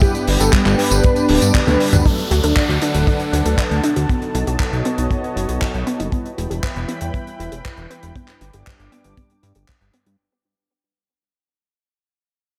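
A straight 4/4 pulse at 118 BPM drives this romantic, danceable italo disco excerpt, built on a tight, dry acoustic kick up front and a damped 70s kit of handclaps, hi-hat, tambourine and toms with small-room ambience and gated reverb, over a fat, saturated sawtooth bass. A lush chorused pad holds sustained chords moving through G, D, B7 and Em, mellow brassy synth stabs with cassette-tape grit and delay sit in the background, and a thick, dark unison lead carries the melody through the opening two seconds, while a drum fill and band accent arrive around 1.5 seconds. From 2.1 seconds a round, detuned analog pluck arpeggio enters with a filter sweep, joined by an electronic downlifter, as the music fades out.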